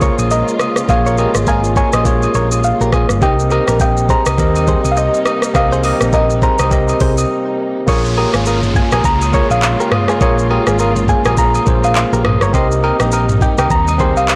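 Blown-out and overdriven with light digital ambience, this mellow, hypnotic afrobeats excerpt at 103 BPM in Bb dorian rides a swung afro-pop drum kit with a knocking kick and metallic hats up front, a dark, punchy hollow-body bass, a bell-like tine electric piano, a twangy direct-recorded clean guitar riff through digital delay, a soft, round pluck melody with chorus and delay, distant bowed strings in the background, agogo bells and woodblock from 0.2 seconds, and an electronic downlifter arriving at 7.9 seconds after a brief break at 7.3 seconds.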